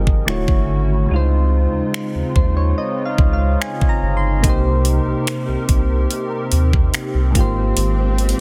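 Mellow, chorused electric-piano-like synth keys open this sensual, late-night contemporary R&B excerpt at 72 BPM. They share the opening with a hollow, warbling, flute-like pad that pumps with sidechain and a deep, round sub bass, moving through Dmaj9, Dbmaj9, Cm7 and Abmaj13. An up-front trap kit of knocking kick, metallic hi-hats and finger snaps, with soft clipping on the snare, carries the straight 4/4 groove while the keys add a fill from 1.9 to 4.4 seconds, and a background electronic swell arrives at 7.1 seconds in a dry, dense, heavily limited mix.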